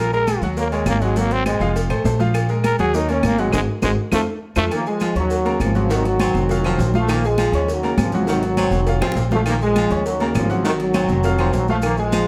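A driving salsa groove at 202 BPM in straight 4/4 opens this passionate cut from a longer piece. Upright bass sits up front with a woody, thumpy gut-string pizzicato, while a natural-sounding concert grand piano adds brilliant comping with deep low notes throughout. Behind them, a percussion bed of close, dry congas, woody vintage claves, distant grainy maracas, ringing metal-shell timbales with agogo bells, and very quiet, round low-tuned cowbell and bongos keeps the pulse moving. For the first 4.6 seconds a raspy, growling solo trombone carries the melody with punchy vibrato, capped by a band accent and a short drum fill. From 4.6 seconds a clear, close-miked jazz trombone section takes over the line in a lower register, joined a moment later by a breathy baritone saxophone playing a second line in the background. Light reverb gives the ensemble a touch of space as the chords cycle around minor sevenths and dominant turns.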